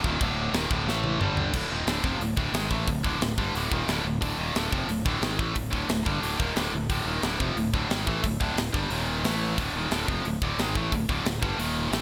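A 1980s-style digital production with moderate plate reverb frames this dark, aggressive heavy metal excerpt, where a picked, double-tracked distorted guitar riff sits up front over a growly, punchy fingered electric bass with fuzz and overdrive, and a polished acoustic kit in an airy big room with gated reverb, bright cymbals, a medium-tuned snare and a tight kick plays a fill from 0.9 to 1.5 s before the main section settles in.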